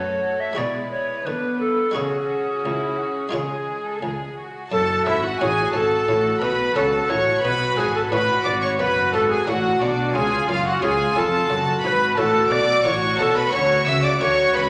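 The tenor recorder stands out most, its pure, woody straight tone with a chiff sitting up front despite a distant placement, carrying the melody alongside a close, expressive violin section in this stormy, dramatic baroque-style concerto movement in F# minor at 88 BPM in a straight 4/4. A second violin line, focused with a smooth top, sits in the background. Beneath them, a smooth, even viola section and a background cello section supply accompaniment and bass, while a buff-stop harpsichord adds a muted, lute-like plucked accompaniment, dry and tucked behind the strings. At 4.7 seconds a dark double bass section enters with a soft attack and expressive portamento, deepening the low end as the harmony moves through F# minor, B minor and C# chords. The ensemble sits in a wet recital hall reverb, and the passage is cut from a longer piece.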